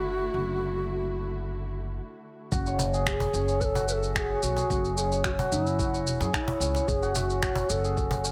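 Organic downtempo with a hypnotic, gently swung feel, this excerpt opens on an airy, close-miked bass bansuri with tape echo and vibrato. Beneath it sit a pizzicato upright bass and a dark, distant, bowed chamber string section with sidechain pumping, leading into a brief break at 2.0 s. At 2.5 s the strings drop out and a shimmering, hammered santur enters with digital delay, joined by a gritty, thumpy sampler-style electronic kick and overdriven electronic shaker and finger snaps. A woody cajon played with hard hands follows at 2.8 s, while the steel-strung upright bass stays up front with tube saturation under light small-room reverb.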